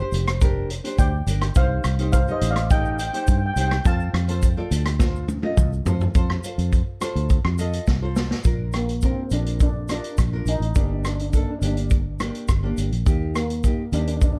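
A shimmering steel pan, played with soft rubber sticks and touched with tape echo, carries the airy melody of this sunny, carefree calypso at 104 BPM in Bb major, over a double-tracked, full-bodied fingerpicked nylon-string guitar with finger squeak, a round, foam-muted electric bass sitting up front, a punchy vintage drum kit with a rolled-off top that drops in fills at 5.0 and 7.9 seconds, and a grainy tube shaker in the background, all in a dark, lightly reverberant production cut from a longer piece.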